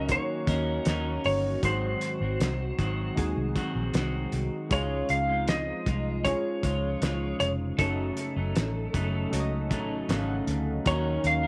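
A dark, compressed slide lap steel melody with subtle chorus and tape echo leads this dreamy, hazy bedroom-pop excerpt at 78 BPM in Db major, over clean picked electric guitar bathed in lush chorus and vibrato, a round, foam-muted fingered bass, detuned analog keys and a hollow, flute-like pad in the background, while a muffled, gritty cloth-damped drum kit with a fat snare and tight kick enters at 0.1 s, the keys adding a fill at 9.3 s as light reverb wraps the Ebm7, Ab7, Dbmaj7 and Gbm6 chords.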